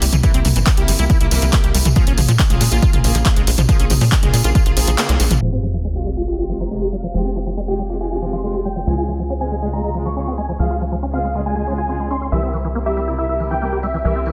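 Uplifting trance at 139 BPM in F harmonic minor, emotional and euphoric, where a dry, punchy analog kick and drum machine with crash, handclaps, hi-hat and toms drive the opening alongside a tight, driving sequencer bass, squelchy resonant acid arpeggios, a jingly tambourine in the background and a rich, earthy chamber string section with light vibrato, until the kick drops out at 5.0 s and a band accent leads into an electronic sub drop at 5.4 s, where huge, lush detuned supersaw chords enter with a filter sweep over a Fmadd9, Db and C7 progression under light digital reverb and a dense, heavily limited master.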